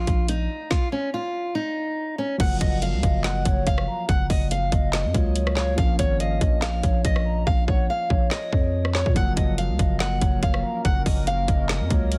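Menacing and hard-hitting, this trap-flavored hip hop cut runs at 142 BPM with a half-time feel, opening on a short break where a fingerpicked steel-string acoustic guitar carries the melody over a growling, buzzy 808-style bass. The guitar has a concert-hall tone, with audible finger squeak and a tape echo trailing its notes, while the trap kit sits up front with a hard-clipped kick, a woody snare with soft clipping, metallic hats, handclaps, rim clicks and crash, all colored by a gritty 12-bit sampler character. At 2.4 seconds a dark baby grand piano with long sustain joins as accompaniment, quickly followed by a hollow, clarinet-like synth lead that floats in the background with vibrato, chorus and its own tape echo. The harmony shifts between Gbmaj7 and Bbm, and partway through the hi-hats drop out briefly before returning. A deep, moody ambient pad with a slow attack and a sub-octave layer arrives at 10.1 seconds, adding sustained chords beneath the dense, heavily limited and fairly dry mix as the clip is cut from a longer piece.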